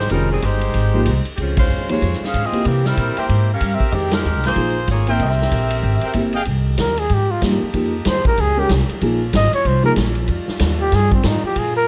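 A breathy, mellow solo trumpet stands out from 6.8 seconds, its close-miked tone carrying vibrato and scooped notes over a dramatic big band swing passage in F minor at 189 BPM. Before it arrives, a clear, tight saxophone section states the melody up front, with a present trumpet section adding stabs from 3.2 seconds and the band landing accents early on. Underneath, a woody pizzicato upright bass and a dark concert grand piano with deep bass carry the harmony through Fm9, Dbmaj7 and C7. A swinging drum kit on ride, hi-hat, medium-tuned snare and punchy kick has a natural big-room character. During the trumpet solo, a vintage-toned saxophone section holds sustained chords in the background as the harmony moves between Fm9 and Bbm7. The sound is close and detailed with little reverb, and the passage is cut from a longer piece.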